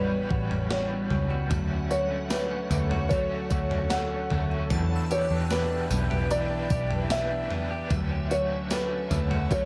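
A felt-muted upright piano carries the melody in this dreamy, ethereal dream pop excerpt in D major, its soft, intimate tone coloured by audible action noise and an analog delay. The tempo is a straight 75 BPM in 4/4, and the harmony moves from A13 to Dmaj7 at 1.5 seconds, then through Em7 and back to Dmaj7. Beneath the piano, a clean electric guitar plays picked arpeggios with subtle chorus and delay, while an overdriven electric guitar adds bright accompaniment through tremolo, lush chorus and analog delay. An airy pad with a slow attack holds sustained chords in the background, and a dark, round muted electric bass anchors the low end. A gated 80s drum machine enters at 0.3 seconds with a thumpy kick, gated-reverb snare, tambourine and toms, all overdriven. A shimmering FM bell with phaser joins at 1.5 seconds, and the whole echo-heavy mix sits in a moderate spring reverb.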